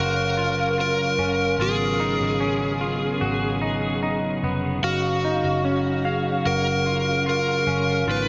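A huge, wet ambient reverb with an 8.0-second tail soaks this short dream pop passage, giving it an ethereal, blissful glow. Up front, an overdriven slide guitar played with fingerpicks carries the melody, its line trailed by a diffuse ambient delay. Beneath it, a mellow, flute-like tonewheel organ holds sustained chords with vibrato, a hint of key click and a lush chorus. A clean semi-hollow electric guitar picks arpeggios coloured by subtle chorus and the same ambient delay. A dark, round, foam-muted electric bass gives a punchy low anchor, and a very quiet vibraphone struck with medium mallets adds a metallic, ringing shimmer with fast motor vibrato. All five parts play throughout the 8.3 seconds as the harmony moves from F#maj7 to G#m11 at 1.6 seconds and back to F#maj7 at 4.8 seconds.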